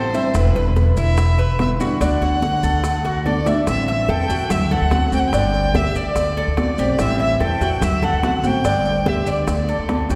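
Cuban son and guajira with a relaxed, warm mood: an expressive bowed violin carries the melody with vibrato and portamento over a dark, fingerpicked flamenco guitar with audible finger squeak, a metallic, double-stringed Cuban tres picking arpeggios, and a woody, growly pizzicato upright bass sitting up front, while tight hard-hand bongos and grainy maracas stay in the background and ringing soft-hand congas play very quietly, a drum fill from 3.0 to 3.7 seconds leads into the next section, and the whole excerpt is bathed in a lush church reverb.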